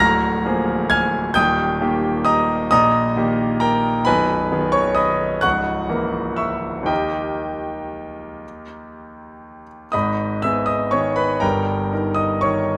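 This is a classical piano waltz in 3/4, elegant and bittersweet, played with a supple rubato that lets the time breathe. A single grand piano carries the whole fragment, its brilliant, polished tone reaching from B0 to A#6 and ringing with long sustain. Close, detailed microphones place the instrument up front and intimate, so the clatter of the action can be heard beneath the notes, while light reverb adds a touch of space. The harmony circles through minor-key colours such as G#m/B and A#dim/C# before settling on a fresh phrase at 9.9 seconds. The passage is cut from a longer piece and ends at 12.8 seconds.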